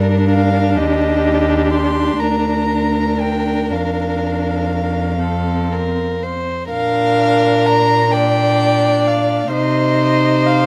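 Classical slow romantic movement for string quartet in Bb major, tender and unhurried at a rubato 39-44 BPM in 6/8, where a dark, smooth-topped first violin sings the melody from 0.3 s over a second violin with an airy sul tasto bow, a softly vibrato viola in its low-middle range and a rich, floating cello bass. All four are bowed with soft attacks, the upper three heard close and intimate while the cello sounds more distant, in a dry, detailed recording that moves from Gm through Ebmaj7 toward F before settling on Bb at 6.7 s.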